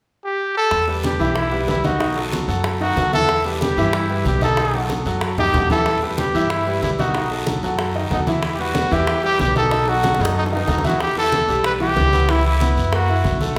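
A clear, up-front solo trumpet opens at 0.2 s with the melody of this fiery, driving salsa excerpt at 187 BPM in E harmonic minor, joined by a woody, growly pizzicato upright bass, tight high-tuned bongos and bright low-tuned congas in the background, a raspy guiro, and an intimate, polished grand piano with audible action noise and long sustain, all over an Em and B7 vamp that moves to Emadd11, C#m7 and F#7 in the closing section, with drum fills at 4.9 s and 10.0 s and a wet recital hall reverb lending a concert-hall space.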